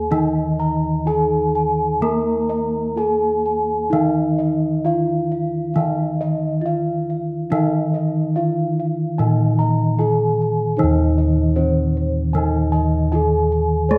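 In a straight, unhurried 4/4 at 63-77 BPM, this serene, ceremonial gamelan fragment in Eb pelog barang (tuned to A4 = 444 Hz) is cut from a longer piece; it layers a bronze metallophone melody, a lower metallophone accompaniment and high metallophone arpeggios over round, beating bossed gongs that carry the bass and add soft arpeggios of their own, with padded mallets giving most parts a mellow glow, one horn-struck metallophone ringing bright, close and up front with shimmering paired-tuning beats, and a moderate recital-hall reverb surrounding it all before the music moves into a new section at 10.8 seconds.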